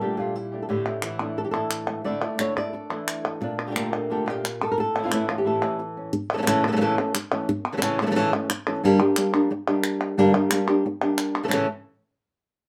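Dramatic and intense, this flamenco excerpt at 178 BPM sets an up-front, thumb-plucked acoustic guitar melody against dark, fingerpicked guitar stabs that drop out at a break at 5.8 seconds, while crisp, close palmas hand claps drive the rhythm through chords moving from Gmadd9/Bb and Asus4 to A and Gm, all in a small room with moderate reverb.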